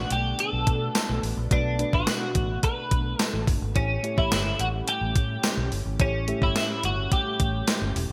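An overdriven, thumpy gated drum machine with a gated-reverb snare drives this dramatic, urgent 1980s-style pop excerpt in B minor at 107 BPM, as a clean, twangy twelve-string electric guitar with analog chorus carries the melody over a round, foam-muted fingered electric bass, a soft FM electric piano with chorus and phaser, dark sawtooth string-machine cellos sustaining chords in the background, and a distant, jingly tambourine entering at 1.0 s, while the harmony moves from Bm7 to A7 at 3.8 s in a bright digital production with light reverb.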